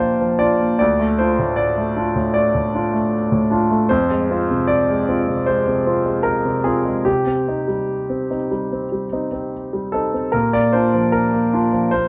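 Neoclassical minimalist piano in Bb major, this short cut from a longer piece moves at 76 BPM in 4/4 with a rubato feel, setting a peaceful, hopeful mood. A solo grand piano carries everything from 0.0 to 12.1 seconds, spanning D2 to G5 with a clear, polished, intimate tone and audible action noise that keeps it present and up front. The harmony drifts from Bb through Dm, Fm and Cm before returning to Bb at 10.3 seconds, where the opening section begins again. A moderate large-studio reverb gives the instrument a natural sense of space, as if captured live in one room. The tuning sits slightly low, with A4 at 438 Hz.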